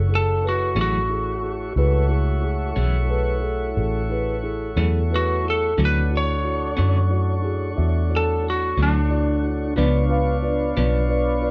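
A slightly broken-up lead guitar, a round, foam-muted electric bass and a smooth, key-clicking tonewheel organ played through a slow rotary speaker open this mournful, soulful slow blues in F# minor at 60 BPM in 12/8 together. The guitar's dark, compressed solo sits up front over the bass and organ. A mellow tine electric piano joins at once and a clean, scooped electric guitar with tremolo enters at 0.8 s, the band heard playing live in a small room as the chords move from F#m7 to Dmaj7 at 5.8 s and C#7b9 at 9.8 s in this passage cut from a longer piece.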